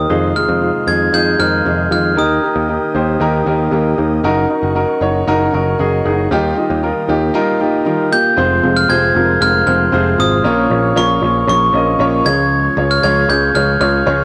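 A bright, bell-like glockenspiel struck with brass mallets opens this hopeful piano-driven pop excerpt at 116 BPM, joined from the start by an up-front baby grand piano with a cassette-tape tint and plate reverb and a growly picked electric bass; the glockenspiel's sparkling melody drops out at 2.7 seconds and returns at 8.1 seconds. Beneath them, a dark, full-bodied fingerpicked jumbo acoustic guitar plays a riff in the background, while a very quiet, flute-like tonewheel organ with key click and a fast rotary speaker holds mellow sustained chords. The harmony moves through Fm7, Eb, Gb6 and Ebadd9 before shifting to Fm, Bbm and Db for the second section at 8.4 seconds, and the recording carries a homemade cassette character in a moderately reverberant room.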